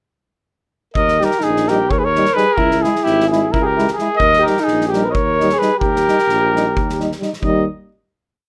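A restless 7/8 pulse drives this short, virtuosic Balkan brass band piece, with a gritty, saturated acoustic kit supplying a two-stick kick and snare pattern beneath a tuba playing root and fifth bass on the main beats. Up front, a trumpet with light vibrato states a motif-based melody in period phrases, shadowed mostly in thirds by a mellow, soft-attacked alto saxophone, while a distant, roomy trombone and a close-miked euphonium in the background place chord tones on the offbeats. The harmony moves from Eb to Dbm and back, landing on a final chord at 7.4 s, all in a rough home demo mix with moderate studio reverb.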